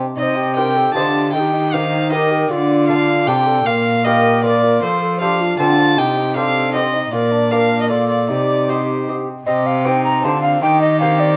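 A classical, renaissance-style consort dance in 3/4 at 155 BPM, set in C dorian with a solemn, rustic mood and cut from a longer piece. A delicate, fingerpicked lute in the background, with its doubled gut strings, opens at 0.0 seconds alongside a mellow bassoon with light vibrato. At 0.2 seconds they are joined by a tenor recorder carrying the melody with a woody, tongued chiff, a nasal, period-style violin on the second line close up front, and a rich, reedy cello on the bass, all set in a moderate stone room reverb.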